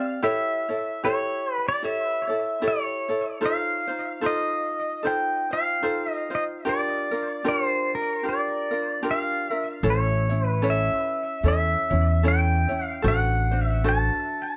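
A twangy electric pedal steel guitar, picked with fingerpicks and gliding with slide and volume swells through a touch of digital delay, carries a sunny, relaxed Hawaiian melody from the first moment, while a light, fingerpicked acoustic ukulele picks out bright accompaniment alongside it in an easy swung 4/4. At 9.8 seconds a woody, growly pizzicato upright bass joins up front, settling under the chords until 14.1 seconds. The fragment sits in a modest small room with a dark, warm overall production.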